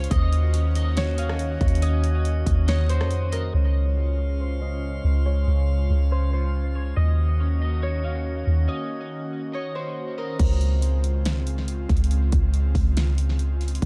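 Atmospheric cloud-rap in Db major at 140 BPM with a half-time feel, this floating, dreamy excerpt is bathed in an echo-heavy digital ambience, where a mellow, fingerpicked Celtic harp carries the melody through a low-pass filter and tape echo while a slightly broken-up, twangy electric guitar plays filtered arpeggios with analog chorus. Beneath them an airy, breathy pad holds sustained chords with chorus and sidechain pumping, a drifting glass-harmonics texture adds calm, glassy overtones with built-in reverb, and a soft, round 808-style bass sits deep and up front. A punchy pop drum kit with a fat snare and gritty 12-bit sampler character plays until 3.4 seconds, drops out during a filter sweep and a break from 8.7 seconds, then returns at 10.4 seconds as the guitar and glass texture fall away.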